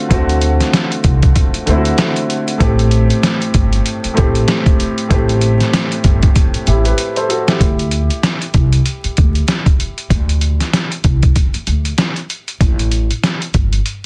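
Moody and reflective, this short boom-bap hip-hop cut swings on a muffled, pitched-down sampler-style drum kit with a thumpy kick and medium-tuned snare, a woody, gut-strung upright bass played pizzicato, and a warm upright piano with long sustain and cassette-tape colouring that drops out at 7.8 seconds after a drum fill, all set in a dry, dense master flecked with vinyl crackle and lossy artefacts.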